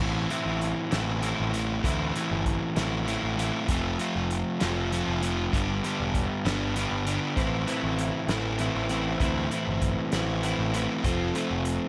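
A crunchy, overdriven electric guitar riff up front and a growling, punchy overdriven bass open this restless, moody indie rock fragment in 6/8, joined at 0.3 seconds by a loose acoustic drum kit with a fat snare and tight kick in a small room, before a bright, twangy twelve-string electric guitar with subtle chorus and slapback echo adds its clean, compressed riff at 7.4 seconds over chords moving from Am through F and G to Amadd9 and back to F, all within a light reverb.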